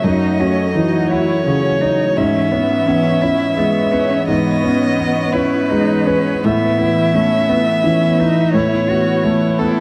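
In a rubato 6/8 at 57 BPM, this fragile, reflective neoclassical piano and strings fragment sets an up-front bowed violin melody with vibrato and tape echo over a focused cello second line, a woody, intimate upright piano accompaniment with audible action noise, and a swirling, detuned analog pad under phaser and chorus, moving through F#m7, E6/G# and Asus2 in a dark production within a moderate recital hall.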